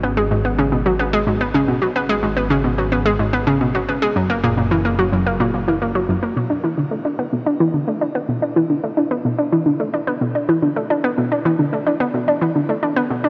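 Ambient, sequencer-driven space music at 109 BPM in a straight 4/4, this short piece cut from a longer work feels expansive and mysterious. An analog pluck carries the riff throughout, its nasal, detuned sawtooth and square-wave tone sitting bright and up front, with a filter sweep, fast attack and short decay, all wrapped in chorus, delay and shimmer reverb. Beneath it, a fat analog bass adds a thick, detuned sawtooth low end with a decaying note shape, but it drops out at 6.3 s. The harmony opens in G# minor, moving from G#m to F# at 4.2 s, then shifts to B minor at 6.4 s, where a Bm chord takes over. A huge, wet ambient reverb with a long tail surrounds the sound, giving the whole cut a vast, floating space.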